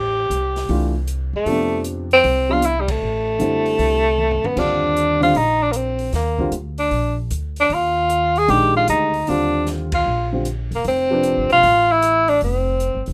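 Modal jazz with a hypnotic, spiritual mood, swinging at 153 BPM in 4/4 in Eb major, heard in a short excerpt cut from a longer piece. A mellow tenor saxophone carries the melody up front with vintage vibrato, sitting in a range from G3 to Ab4. An upright bass, plucked and thumpy with a woody tone, anchors the low end from the start, while a dark upright piano adds accompaniment from 0.7 s. An open jazz drum kit in a small room, with dark cymbals and a boomy kick, sits low in the mix. The band hits accents at 2.8 and 9.9 seconds, and a brief drum fill arrives at 4.2 seconds. The harmony moves from Fmaj9 to Ebmaj9 and settles on F, all captured in a rough home demo mix with light reverb.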